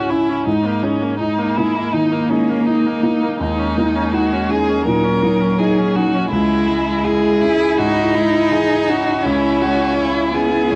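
A homely cassette recording with a moderate spring reverb gives this brief neoclassical fragment for piano and strings a soft, worn glow. The mood is reflective and fragile, and the pulse is loose and rubato. Up front, a felt-muted upright piano plays a mellow, intimate accompaniment, while a single bowed violin carries the melody with a rich, smooth, even tone, vibrato and a touch of analog delay. A lone cello sings a close, expressive second line with vibrato, soft attacks and portamento, and a viola sits in the background adding gentle accompaniment with light vibrato and a warm, smooth top. Over roughly 10.8 seconds the harmony moves from G#sus2 at 0.5 seconds through D#m7 to C#m at 6.3 seconds, as though lifted from a longer piece.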